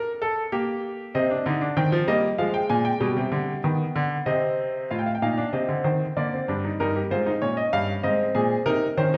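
Moving in a straight three-beat metre, this brief excerpt from a longer work is a baroque-style fugue in three parts, written for solo grand piano and carrying a contemplative, solemn mood. The clear baby grand sits up front with a natural tone and short sustain, its lines ranging from G2 up to Ab5. A wet recital-hall reverb surrounds it, lending the sense of a listener seated further back in the room. The opening passage moves through Gm/Bb, Cm, Fm and G/B before settling on Cm at 4.3 seconds. From 4.9 seconds a second passage travels through F7/A, Bb/D, Eb7/G and Ab, arriving on Cm7 just before the fragment breaks off at 9.2 seconds.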